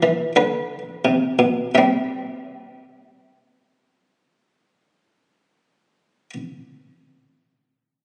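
Elegant and joyful, this short cut from a longer baroque-style two-part invention in C major moves at a stately 42 BPM in 4/4 with A tuned to 435 Hz, its solo buff-stop harpsichord sounding muted, plucked and lute-like in the French style, dry and up front in the midrange, slowing over the opening 1.7 seconds on a rootless G before arriving at C and playing on until 6.3 seconds, all captured on a phone in the room with compression, club reverb and a wet scoring-stage reverb that lingers about 2 seconds.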